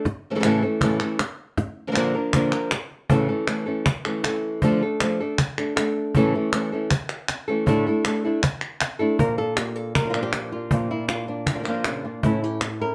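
Close, detailed microphones and a light reverb give this short cut from a longer flamenco piece an intimate, present sound, fiery and passionate in mood with a straight 4/4 drive. An up-front flamenco guitar carries the melody from the start, fingerpicked with audible finger squeak, its acoustic tone rich and rounded as it moves through chords of A, Bb, Dm and Asus4. A snappy cajon with snares, set in a small room, enters at 0.1 seconds, and crisp palmas hand claps, placed up front with a live-room air, join at 0.4 seconds. At 9.2 seconds the music shifts to a Bb chord and a second flamenco guitar arrives with stabs, its fresh strings warm and fingerpicked beneath the lead. The passage settles back onto A before it breaks off at 12.9 seconds.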